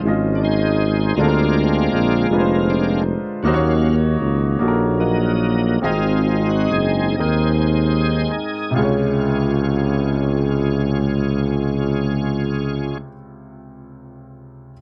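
A dry, close studio sound in a 1970s vein frames this reverent, hopeful slow gospel fragment in 6/8. A bright, shouting tonewheel organ leads from the start, lightly overdriven with chorus vibrato, key click and a slow rotary speaker, and during its solo the music slows down from 3.4 s to 8.8 s over chords moving from Dbmaj7 through Bb7, Ebm7 and Ab. A punchy, up-front tuba carries the bass with light vibrato, while a clear, open baby grand piano accompanies with long sustain and rings on alone after the organ and tuba stop at 13.0 s.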